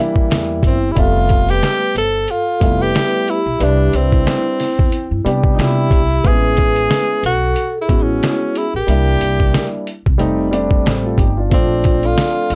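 A breathy tenor saxophone with vibrato, subtone and scooped notes carries the melody up front in this nocturnal, mellow jazz-hop excerpt, over a muffled, pitched-down sampler-style drum kit with a thumpy kick and fat snare, a woody pizzicato upright bass with tube saturation, a dark grand piano with audible action noise, and a ringing soft-mallet vibraphone in the background, set in a dry, gritty recording with a swung sixteenth-note feel.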